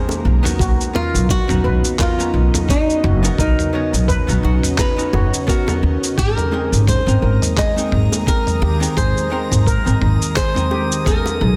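At 86 BPM in 4/4, with a 57% swing on the sixteenths, a gritty, tape-warm sampler-style soul kit with cabasa, handclaps and toms sets a relaxed sunset-chillout groove alongside very quiet, high-tuned bongos played with soft hands. A thumpy, compressed electronic kick joins from 0.6 s. Up front, a woody pizzicato upright bass anchors the harmony as it moves from Bmaj9 to Abmaj9 at 6.2 s. A fingerpicked flamenco guitar carries the melody through a delay, while a clean, picked hollow-body jazz guitar accompanies with digital delay, and a steel pan adds shimmering, metallic arpeggios, also with digital delay. An ethereal, bright pad holds sustained chords in the background, coloured by ensemble chorus, reverb and phaser, and from 7.1 s a glassy texture of drifting overtones floats in softly. The whole sunny, blissful passage, cut from a longer piece, sits in a light small-room ambience with a dense, heavily limited modern sheen.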